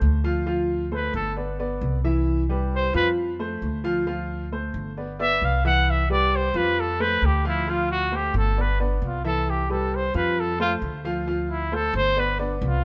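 Lightly reverberant and close, this relaxed, danceable stretch of Cuban son and guajira in C major at 133 BPM sets a clear baby grand piano's arpeggios over a dark, woody pizzicato upright bass on a repeating Dm7–G–Cmaj7–F cycle, while a breathy, whispered trumpet enters at 0.9 seconds to carry an intimate, vintage-toned solo melody with vibrato and a soft attack.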